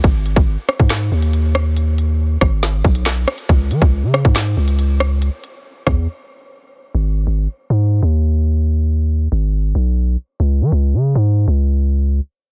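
Cold and ominous, this drill hip hop excerpt moves at 139 BPM in a half-time feel in G# minor, with a long, deep, sine-toned 808-style bass sitting up front throughout, its fast attack decaying into a mellow tail. An electronic drum kit of hard-clipped kick, woody snare, crisp hats, rim clicks and handclaps carries a tape-warm, up-front sound until 6.0 seconds, after which a break at 6.1 seconds leaves the bass alone into the second section. The mix is dry, dense and heavily limited.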